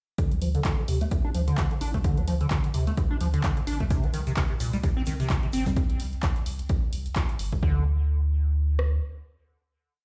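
Driving and raw, this complete acid house piece runs at 129 BPM in D phrygian with a light 16th-note swing, as a punchy analog drum machine pounds a four-on-the-floor kick with rim clicks, tape-warm closed and half-open hats and clapped backbeats under a squelchy, hollow square-wave acid line with accents and slides, overdriven, chorused, tape-echoed and pumping against the kick through a filter sweep from 0.2 to 5.8 seconds, while a deep, round sine sub bass with tube saturation plays off-beat, a grainy shaker slips in quietly from 3.9 to 5.7 seconds, a band accent lands at 7.2 seconds and a final note rings out to the end, all heard through a big system in a bare stone room with a dulled top end.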